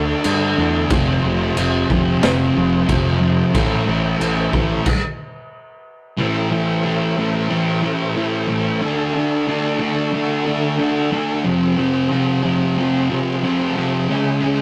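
A thick, double-tracked fuzz guitar sits up front in this dark, brooding stretch of quiet-loud alternative rock, its picked riff heavily distorted and carrying through the whole clip. Behind it, a percussive tonewheel organ holds clean, fat sustained chords through a slowly turning rotary speaker, its vibrato and second-harmonic percussion kept in the background. In the opening seconds, a growling, overdriven picked bass with a round tone joins a raw garage drum kit of boomy kick, high-tuned snare and dark crash cymbal, the kit gritty, saturated and pumping in a small room. Bass and drums are gone by 5.0 seconds, and after a stop that lasts until 6.2 seconds the guitar and organ carry the repeated section alone, over chords moving from D through F minor and closing on C# minor. The sound is rough, like a rehearsal room, with tube saturation and a moderate stone-room reverb.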